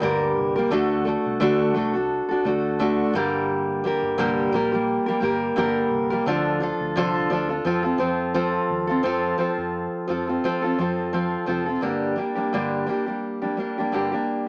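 This recording comes through a worn, warbling cassette tape with a warbly pitch drift and a small-speaker sound, set in a moderate studio reverb. It is a wistful, tender acoustic pop fragment in G minor, cut from a longer piece, moving at an unhurried 86 BPM in 4/4 with a gentle swing on the sixteenths. Up front, a picked steel-string acoustic guitar on old strings carries the accompaniment with a woody, full-bodied jumbo tone, moving through G minor, D, D minor and F. Beneath it, a vintage fingered electric bass sits in the background, dark, round and foam-muted, with a touch of tube saturation. The bass drops out at 11.8 s as the harmony returns to G minor, leaving the guitar alone until the close at 14.5 s.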